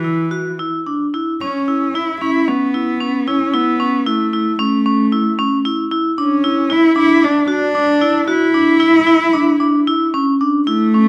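A dark, bowed solo cello sings an expressive, close-up melody with vibrato and portamento while a bright, metallic vibraphone struck with hard mallets, motor off, rings out up-front arpeggios, both playing throughout this hypnotic, pensive contemporary instrumental fragment in 9/8 at 227 BPM (eighths), tuned to A4 = 438 Hz, with chords moving through Esus2, A, Dsus2 and a rootless F#7(no3) inside a moderate recital hall reverb.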